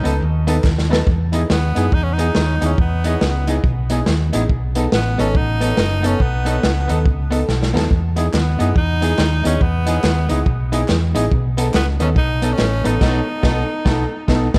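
Joyful, upbeat ska with a swung feel, where an edgy tenor saxophone carries the melody through analog delay over a slightly broken-up, twangy electric guitar in spring reverb, jangly tack piano stabs echoing in the background, a round, punchy hollow-body bass and a gritty, saturated breakbeat kit up front, with barely audible handclaps returning at 8.3 seconds before a band accent closes the cut at 13.0 seconds, all in a dark, close-sounding production.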